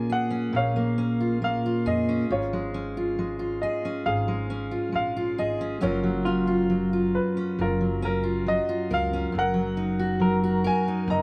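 Intimate and nostalgic, this slow folk excerpt in F# major at 68 BPM sets a bright, woody upright piano melody with slapback echo over an up-front, full-bodied fingerpicked steel-string acoustic guitar and a warm, woody pizzicato upright bass, moving through A#m7, C#/G#, F#maj7 and D#m/F#, until a slightly broken-up, lo-fi electric guitar through a small old amp adds tremolo-washed arpeggios from 6.3 seconds, all under light reverb in an open-air setting.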